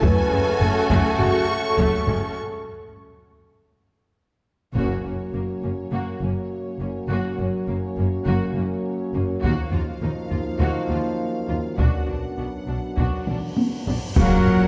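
Taiko drums with hard sticks drive a heroic, adventurous cinematic orchestral cue at 102 BPM, beneath bowed strings, with warm violins carrying the melody over rich violas, woody double basses and cellos, while mellow, roomy French horns in the background and vintage-toned trombones hold sustained chords. After a break and drum fill the music settles into F# major at 4.8 s with a full band accent, then the taiko drops out before returning at 9.4 s, and bright clash cymbals and concert bass drum join as the harmony moves to B minor. A huge cymbal swell builds into an impact at 14.2 s, where dark trumpet stabs and very quiet, clear woodwinds arrive for a final accent, all set in a moderate concert hall reverb.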